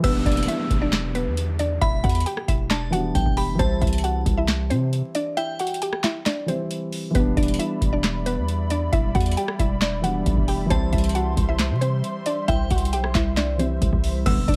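Dry and dusted with vinyl crackle, this eerie, melancholic half-time trap excerpt sets a woody, round mallet-like synth pluck melody over a dark concert grand piano, a heavy, punchy 808-style bass and an up-front, booming analog drum machine with deep kick, crisp snare, handclaps and metallic hats, while a crystalline synth bell adds a second line, an airy, breathy pad enters with sustained chords at 7.3 s, a downlifter sits in the background, and an intimate bowed chamber string stab lands with the impact at 14.3 s.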